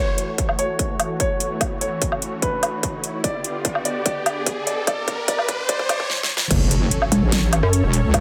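Lightly reverberant and chaotic, this aggressive heavy wobble dubstep excerpt at 147 BPM in a half-time feel opens with a dark, intimate grand piano melody trailing dub echo over lush, pumping supersaw chords under a filter sweep and a rising riser, as a dubstep drum kit with a huge snare and metallic hats and a distorted electronic kick join to build through a drum fill, until the drop at 6.5 s brings a saturated square-wave wobble bass and, from 7.1 s, a pulsing, mellow pluck wobble bass, both chorused and up front, alongside an electronic impact.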